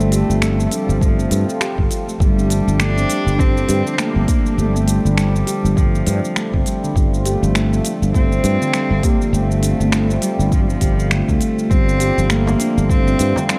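A swung sixteenth-note groove in 4/4 drives this earthy, hypnotic organic downtempo piece, cut from a longer work. Finger snaps, crisp hi-hat and shaker from a tape-toned electronic kit set the pulse, re-recorded in a large room, with a deep electronic kick joining at 1.0 s and a close, dry frame drum appearing at 12.5 s. Up front, a growly, punchy fretless electric bass sustains its line with sidechain pumping. A meditative stainless-steel handpan rings out mellow arpeggios through a delay, while a detuned, wave-folded analog pad sits in the background holding smooth, warbling chords colored by chorus, vintage 12-bit sampler grit and its own sidechain pumping. Carrying the lead, a single bowed cello sings an intimate sul tasto melody with light vibrato, soft attack and a trailing delay, all set within a digital ambience.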